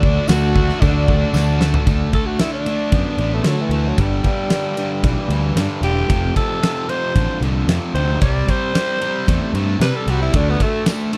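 A dry, close 1970s-style studio sound frames this sunny, swaggering classic rock excerpt at 113 BPM in straight 4/4, where a raspy, growling tenor saxophone with slapback echo takes a solo from 1.9 seconds over D, G, F and C chords. Beneath it, a fuzz-laden electric bass and a huge arena kit with a fat snare and punchy kick sit up front, while two overdriven electric guitars, one of them a cranked stack in the background, play the riff. A boxy, shimmering twelve-string acoustic guitar, a woody upright piano, a jingly tambourine and a barely audible rotary-speaker tonewheel organ add colour, with a drum fill at 1.3 seconds launching the solo.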